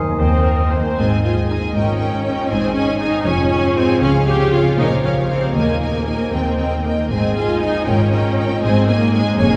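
Heard from far back in a cathedral-like wash of reverb, this lively, spirited classical excerpt from a dramatic romantic orchestral movement in 6/8 opens with a brief touch of clear clarinet and oboe and airy flute that stops at 0.7 seconds, while a lush violin section carries the vibrato-laden melody over a second violin line, up-front expressive violas, dark sustained French horns, ringing harp arpeggios, and a bass of focused double basses and soft-attack cellos in the background.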